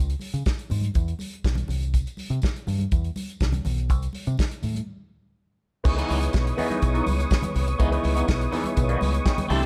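A straight disco groove in 4/4 opens this celebratory, glamorous cut from a longer piece, driven by a deep, round, punchy fingered electric bass and a soul drum kit with a tight kick, medium-tuned snare, dark cymbals and a roomy, distant character, both sitting up front. Congas with a thick, close and dry skin sound fill the background, while a jingly, vintage tambourine adds a very quiet shimmer. The harmony rests on a C#m7 before the chords drop away, and a break arrives from 4.9 to 5.8 seconds. At 5.8 seconds the arrangement blooms over a C#m9: an intimate concert grand piano with audible action noise and deep bass joins alongside a clear, lightly overdriven tonewheel organ holding sustained chords through chorus vibrato and a slow rotary speaker, key click audible. An electric guitar at the edge of break-up, twangy and colored by phaser, enters a moment later at 5.9 seconds to play in its middle register. 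The grand piano closes the passage with a fill from 8.3 seconds, all within a light reverb.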